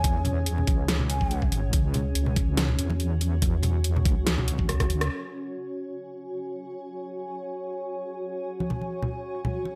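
Bathed in a light reverb, this cavernous, brooding fragment of deep dubstep rolls at 142 BPM in a half-time 4/4 feel, opening on C#m. A breathy low ney with vibrato and lifted highs sounds a brief tongued phrase at G#5, trailing a dub echo, and falls silent by 1.4 s. Beneath it, a granular cloud pad holds blurred, evolving chords from C#4 to G#5, its slow attack, moving notch and long release softened further by its own built-in reverb. Up front, a soft wobble bass of detuned sawtooth and sine, compressed and thickened with chorus, moves between G#1 and E2. Overdriven electronic drums, re-recorded in a small room, pair a knocking kick with a huge snare, bright hats and rim clicks, while thin-skinned congas struck with hard hands sit in the background. A drum fill from 4.7 s and a band accent at 5.0 s lead into the second section at 5.1 s, where the bass and drums stop and the mellow pad carries an F#5 chord, with the congas briefly returning near the close.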